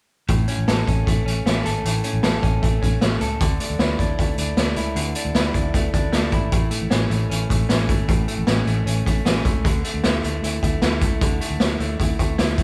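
Recorded as a band playing live in one room with a moderate studio reverb, this excerpt of jangly indie pop has a youthful, bright mood at a straight 154 BPM in A major. A gritty, saturated garage drum kit sits up front with a boomy kick and rolled-off top, while a dark, round, foam-muted vintage bass holds the low end and a clean, compressed, direct-recorded electric guitar plays picked arpeggios throughout from 0.3 to 12.6 seconds. The harmony simply alternates between A and Dsus2, with the second section beginning at 6.5 seconds.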